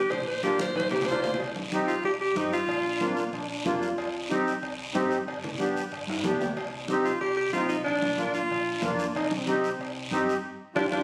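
Passionate and fiery, this cumbia in C minor at 186 BPM sets an edgy, forceful alto saxophone lead against a reedy accordion with light tremolo tuning, a round hollow-body electric bass, bright hard-hand congas, ringing, distant cowbell and timbales and a raspy guiro, while a growling trombone adds a second line from 2.8 seconds, all heard through a phone-in-the-room recording with moderate studio reverb and compression, before a band accent at 10.4 seconds.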